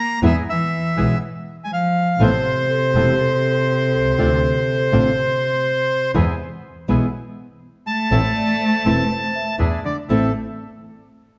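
Sultry and melancholic, this rubato tango fragment sets a reedy, up-front bandoneon melody touched with analog delay over an expressive bowed cello second line with portamento, a fingerpicked classical nylon-string guitar, and a rich, smooth bowed double bass. A second, brighter bandoneon adds dry, close-miked stabs in the background, while a dark, ringing vibraphone played with medium mallets and slow motor vibrato drifts in at 2.7 seconds and returns at 8.4 seconds. The players sit in a moderate recital hall reverb as the harmony moves through Amadd9, Dm7 and E7.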